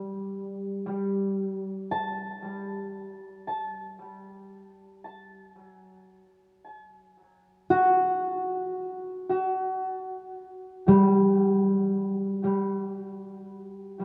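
A wet plate reverb with a 3.3-second tail and a cassette-tape haze wrap this short, echo-heavy recording, cut from a longer piece. It is ambient music in free time, luminous and serene in mood. A solo concert harp carries the whole 14 seconds, its acoustic, thumb-plucked tone ringing and sitting up front, with tape echo trailing each note across a range from G3 to A5. The opening stretch rests on a Gsus2 chord, and at 8.8 seconds the harmony falls away to open, unaccompanied phrases for the closing part. The result feels suspended and glowing, with the reverb and echo giving the single instrument a soft, spacious halo.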